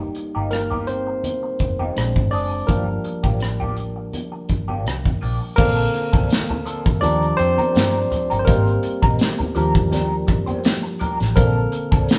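Lightly swung sixteenths in 4/4 carry this short, romantic, smooth cut of lush 1970s-style soul, with a bright, barky tine electric piano up front soloing through a combo amp over ninth and seventh chords. A wah-treated electric guitar through a small old amp plays a slightly broken-up, compressed riff, while a dark, foam-muted fingered bass sits under a polished drum kit with a punchy kick, bright cymbals and very quiet, soft-handed congas. A barely audible jingly tambourine enters at 6.3 seconds, and the whole band plays live together in a moderate stone room.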